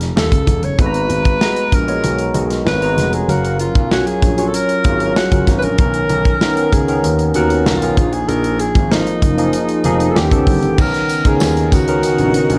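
A straight 4/4 groove at 96 BPM drives this upbeat, glossy slice of polished 1980s jazz-funk pop, cut from a longer piece, with a modern studio drum kit up front supplying punchy kick, medium-tuned snare, hi-hat and crash from the first beat. A dark, mellow grand piano holds down the bass line in the low register, while a bright, barky tine electric piano, lightly overdriven through a combo amp and treated with analog chorus, comes in at 0.8 seconds to comp through chords like G#m9, F#maj7 and Bmaj9. Above them, a breathy alto saxophone carries the solo melody in a jazz style, its subtone and vibrato sounding distant and roomy. At 10.8 seconds the music moves into a new section as a lush, thick, warbling unison pad with chorus swells in slowly in the background, joined by a jingly tambourine. Light reverb and small room ambience give the whole a dark, warm production sheen.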